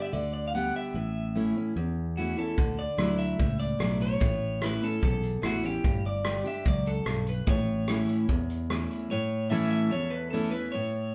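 Honky-tonk and classic country with an easygoing, heartfelt mood, in which a twangy, slightly broken-up electric guitar from a small old amp carries the melody over a bright, full-bodied picked steel-string acoustic guitar and a round fingered electric bass, while a natural country drum kit with a punchy kick, hi-hat and rim click comes in at 2.6 s and a clean pedal steel guitar adds soft volume-swelled chords in the background from 9.5 s, all played live in one room with moderate studio reverb.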